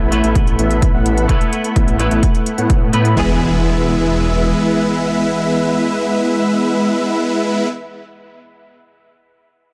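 A straight 4/4 pulse at 128 BPM drives this anthemic, euphoric festival progressive house fragment in E major, where a punchy, up-front kick and crisp hi-hats give way at 3.2 s to a very quiet impact as huge detuned supersaw chords with a low-pass filter and dub echo, a menacing saturated saw bass, a bright clean semi-hollow electric guitar with ensemble chorus and a warbling vintage pad in the background all pump against the sidechain over a move from Asus2 to E, under light digital ambience.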